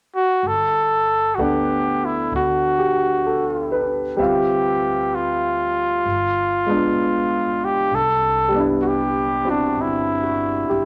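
A breathy, mellow trumpet carries the melody from 0.2 seconds, up front with scooped notes and a smooth top, in this late-night, romantic jazz ballad at 64 BPM in G major with a gentle swing. A woody pizzicato upright bass joins at 0.4 seconds, and a clear concert grand piano with long sustain and deep bass adds accompaniment from 1.4 seconds over lush chords moving from Gmaj9 through Dm11 and G7b9 to Cmaj9. Moderate large-studio reverb gives the passage, cut from a longer piece, a spacious, intimate glow.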